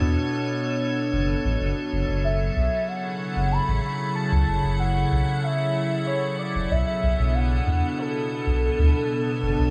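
In a straight 4/4 feel, this intricate, glitchy IDM fragment opens on an icy, crystalline pad holding airy chords, coloured by chorus, its own reverb and a gritty vintage sampler edge, over a deep, round sine sub bass. The harmony shifts from Bm7 to F#m7 at 1.6 s, and at 2.2 s a velvety, wave-folded synth lead enters with vibrato, chorus and digital delay before the chords return to Bm7 at 6.7 s. A light reverb frames the whole passage, which is cut from a longer piece.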